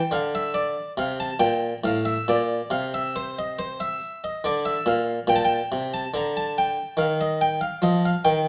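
In a gently rubato 3/4 at 70 BPM, a solo harpsichord plays this serene, flowing baroque-style suite movement, cut from a longer piece and tuned to A4 = 441 Hz. The Italian-style instrument, with one set of strings, sounds round, full and plucked, close-miked and up front as it spans A2 to Bb5, while a stone room's reverb adds a 1.1-second tail. The harmony moves from Bb through Bb/D to a Bbmaj13 at 5.3 seconds, where the music settles into Bb major, closing on an open F5 at 7.8 seconds.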